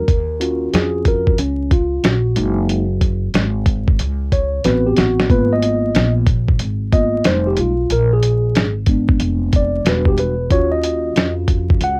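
Smoky and cool, this jazz-hop cut from a longer hip hop piece moves at 92 BPM in 4/4, with a 65% swing on the sixteenths. A mellow tine electric piano, clean and heard through its built-in speakers, carries a solo for the full 12 seconds, ranging from G3 to F#5 over a cassette-tape color. Beneath it, a woody, dark upright bass with steel strings is plucked pizzicato low in the register, while a gritty, compressed sampler-style soul drum kit joins at 0.1 seconds with a thumpy kick, medium-tuned snare and hi-hat, also run through cassette tape. The drums break into a short fill from 4.6 to 5.3 seconds as the jazzy harmony drifts through chords such as D#m9, Am69, A#7b9 and Em9 before returning to D#m9. Light reverb, vinyl crackle and the character of a home cassette recording give the whole piece an intimate, worn-in feel, with the keys, bass and drums all placed up front.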